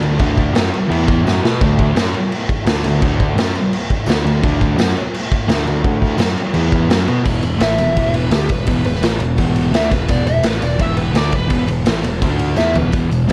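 With the grain of cassette tape, light reverb and studio ambience, this swaggering, rowdy garage rock cut at 170 BPM drives a double-tracked, dark fuzz guitar riff over a growling, overdriven picked bass and an up-front, punchy drum kit that pumps in a bright stone room with gritty fills, while a very quiet jingly tambourine joins at 0.6 seconds and a distorted lead guitar melody enters at 7.6 seconds as the chords move from D5 and E5 through F#sus4.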